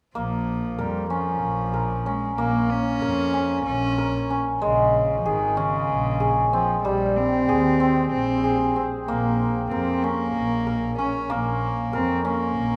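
A straight, hypnotic 7/8 pulse drives this urgent contemporary instrumental fragment, cut from a longer piece, where a hammered cimbalom spins shimmering, ringing arpeggios up front over chords that move from Bbm through Db5 and Abmaj7/Bb back to Bbm. A solo bowed cello carries the melody close to the listener, its sul tasto tone rich, pure and floating with a soft attack. Beneath them, a single bowed double bass holds a clear, focused line with vibrato, and all three play together from 0.2 to 12.8 seconds in a moderate recital hall reverb.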